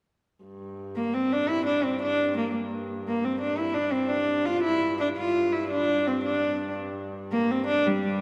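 In a straight 6/8 at 114 BPM counted in dotted quarters, this short excerpt from a longer medieval dance in G dorian feels mysterious and ancient. A dark, woody hurdy-gurdy sets up a close drone on G2 at 0.4 seconds, and at 1.0 seconds a single viola da gamba enters up front, carrying the melody between G3 and F4 with a pure, floating tone, light vibrato and a soft, airy bow. The church reverb is wet, with a long 2.9-second tail, and the fretted viola rings.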